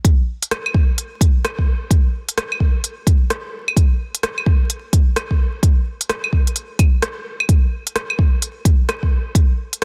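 Future garage at 129 BPM in 4/4, with a 62% swing on the 16ths and a nocturnal, melancholic mood, in a short excerpt cut from a longer piece. A deep, layered electronic kick sits up front beside an organic-sounding electronic kit of claves, crisp hi-hats and rim clicks, its snare softly clipped and its tone tape-warm, both parts re-recorded in a small room. The dry, dense and heavily limited master carries a bed of vinyl crackle, with the kick playing until 9.5 seconds and the kit until 9.8 seconds.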